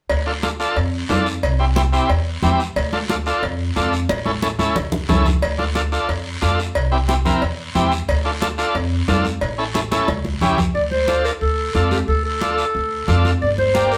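A straight 4/4 cumbia pulse drives this danceable excerpt from a longer piece at 180 BPM in D minor, carried by close, dry congas with a thick skin, a raspy guiro and ringing metal-shell cowbell and timbales, with drum fills at 4.1 seconds and near the section change. Underneath, a pizzicato upright bass sits up front with a dark, woody, thumpy tone. A vintage overdriven combo organ, buzzy and heavy with vibrato, pushes the chords forward, cycling through Dm, C and A before landing on A7. The cowbell and timbales stop at 10.2 seconds, and at 10.7 seconds a solo clarinet in classical style takes the melody for the closing section, its tone distant and roomy yet placed up front as the harmony moves to Gm. The band plays together live in one room under moderate studio reverb, giving the whole groove a driving feel.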